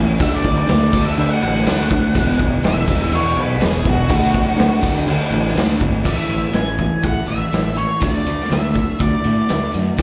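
A straight 4/4 rock groove at 123 BPM drives this sunny classic-rock excerpt, with a gritty, saturated garage drum kit up front, its boomy kick, medium-tuned snare and dark crash and ride cymbals pumping in a small room, while a round, fuzzed-out fingered bass holds the low end. A dark octave-fuzz lead guitar takes a solo from 0.2 seconds until 6.1 seconds, soaked in plate reverb, slapback echo and analog delay, over a double-tracked crunchy rhythm riff set back in the mix with its own slapback echo and a bright, very quiet picked steel-string acoustic underneath. The chords move from D to E and back to D before the section change at 6.1 seconds brings A and then D, all heard as a live club gig through the venue's PA with a light reverb.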